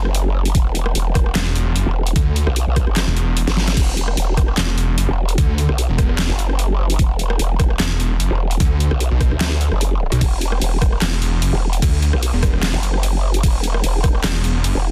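A snarling, detuned sawtooth bass joins at 1.4 seconds and sits up front with a grinding, resonant distortion, alongside a wobbling, formant-filtered growl bass that runs from the start of this heavy, chaotic wobble dubstep cut at 149 BPM in a half-time feel with a light swing on the 16ths. Underneath, an overdriven, knocking electronic kick and a layered dubstep kit of deep snare, bright hats, handclaps, rim clicks and crash cymbal push the drop forward, with a short drum fill and band accent near 3.7 seconds before the drop restarts. The mix is dense, dry and heavily limited, with only a small room reverb on the drums, all resting on an E5 chord.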